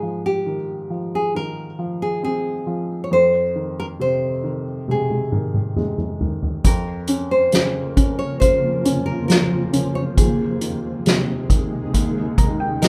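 A slow, straight 4/4 pulse at 68 BPM carries this tender, heartfelt pop ballad in Ab major, cut from a longer piece. A full-bodied, fingerpicked nylon-string guitar sits up front with the melody, its deep classical tone marked by audible finger squeak. A warm baby grand piano, open and close in the mix, supports it throughout, moving from Ab6 through Fm7 and Bbm/F to Ab/Eb before an Eb7 brings a piano fill at 11.9 seconds. A soft-mallet drum kit arrives with a fill at 4.9 seconds, distant and roomy yet with a fat snare and punchy kick, using hi-hat and toms as well. At 7.7 seconds a granular cloud pad joins with sustained chords, its blurred, detuned sine texture evolving, with a slow attack, long release and its own built-in reverb, while a small room and a rough home-demo mix give the whole a modest, intimate sound.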